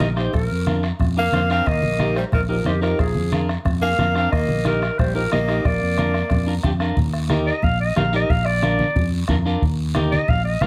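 Joyful and danceable, this cumbia excerpt moves at 181 BPM in Eb major, with a clear, distant clarinet carrying the melody through plate reverb and taking a solo at 7.0 seconds, while a bright, vibrato-laden tenor saxophone adds a close-miked second line from 1.2 to 6.6 seconds over a dark, picked clean electric guitar, an up-front fingered electric bass, a soft-beaten bombo, damped low-tuned congas in the background and a raspy, dry guiro.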